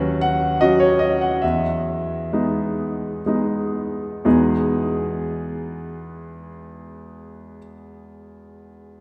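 A solo concert grand piano opens on a Badd9/D# chord, its clear tone sitting up front against a wet church reverb with a 3.4-second tail. This neoclassical minimalist excerpt in E major, cut from a longer piece, moves in a rubato 3/4, with a tempo that drifts between 58 and 83 BPM and slows over the first 4.2 seconds before the music turns to a new section. The harmony settles onto Emaj7 at 1.4 seconds, and the mood is intimate and hopeful. The piano ranges from D#2 to F#5, pairing a deep bass with a smooth, vintage character. Recorded in a church or concert hall, the instrument carries a spacious, resonant halo that frames its close, clear sound.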